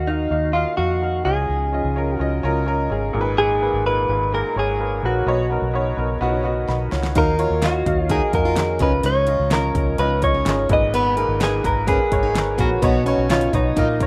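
A straight 4/4 pulse at 127 BPM drives this bittersweet, earnest piano-driven pop passage, cut from a longer piece, as a worn, slightly detuned upright piano with audible action noise and a foam-muted, round electric bass carry a cycle of added-ninth chords from Ebmadd9 through Dbadd9, Abmadd9 and Badd9. Above them a direct-recorded clean electric guitar plays the melody with a lush chorus, while a very quiet, shimmering pulse-width pad holds sustained chords underneath. After the piano begins a fill at 6.2 seconds, a punchy pop kit with a fat snare, metallic hats and handclaps enters with a fill at 6.7 seconds, and at 7.2 seconds a dark, picked plugged-in steel-string acoustic guitar adds a riff, all in a rough home demo mix with light reverb.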